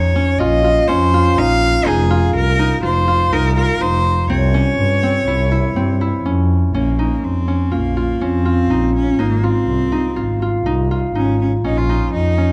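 Moving in a straight 5/4 at 123 BPM in F minor, this restless, pensive contemporary chamber excerpt sets a clear, smooth, even bowed cello melody with vibrato over ringing, fingerpicked Celtic harp arpeggios and a veiled, con sordino double bass bowed with a soft attack, all three up front in a dark production with moderate recital hall reverb, its harmony shifting from Bbmadd9 through F7(no3) and C to Bbm at 6.7 seconds.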